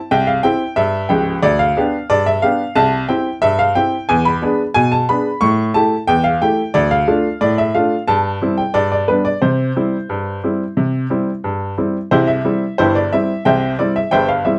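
A brilliant, woody upright piano plays alone throughout this jaunty, cheerful ragtime fragment, cut from a longer piece, set in a straight 2/4 across a range from Db1 up to Db6 with a short, up-front sustain. The harmony moves from C through G/D, E7, A5 and Dm before settling back on C at 9.4 seconds, and the opening section repeats from 12.1 seconds. A moderate club reverb and a dark production surround the bright piano tone.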